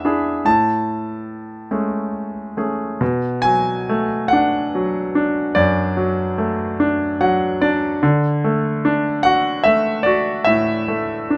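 A clear, polished concert grand piano plays alone in this calm, tender classical passage, cut from a longer piece, moving at 48 BPM in a lyrical 6/8 with uneven beats and free rubato. Its deep bass and short sustain sit up front under close, detailed microphones and light reverb as the harmony drifts from Amaj7 to Bm7 at 3.0 seconds, with a brief piano fill at 6.8 seconds before settling onto Dadd9 at 8.0 seconds.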